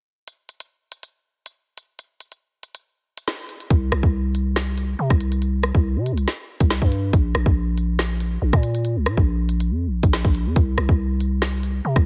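A growling, buzzy 808-style bass, sine-based with a fast attack and a decaying tail, enters at 3.7 s and sits up front in this menacing, cold drill cut from a longer hip hop track, moving at 140 BPM in a half-time 4/4 feel. Before the bass arrives, the electronic drum kit plays alone from 0.3 s, with a hard-clipped kick, a woody snare carrying soft clipping, crisp hi-hats and a rim click, all placed forward in the mix. The room is nearly dry, and the master is dense and heavily limited.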